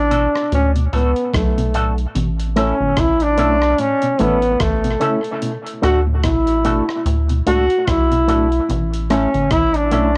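Spacious and laid-back, this dub reggae excerpt moves at 73 BPM in D major with a swung sixteenth feel, as a clear, punchy trombone carries the melody up front with light vibrato and scooped notes, sounding distant and roomy through cassette tape and tape echo. Beneath it, a rubbery, hollow square bass with a filter pluck and moving notch bounces darkly, while a bright, twangy electric guitar with an envelope filter, harmonic tremolo and a filter sweep over the first 2.2 seconds plays accompaniment, and a dark, fingered electric guitar adds arpeggios in the background. A gritty, tape-warm breakbeat sampler-style drum kit with a thumpy kick, hi-hat and rim click sits in the moderate booth ambience of this home cassette recording as the harmony moves between D and A.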